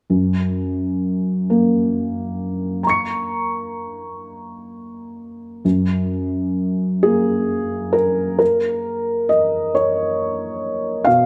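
Set close and up front in a moderate recital-hall reverb, this short fragment of a longer neoclassical minimalist piece features a solo felt-muted upright piano with a dark, boxy, mellow tone, unfolding in a rubato 6/8 across a span from deep bass to high treble, its intimate, peaceful mood shifting into a second section at 5.6 seconds before the fragment ends at 11.3 seconds.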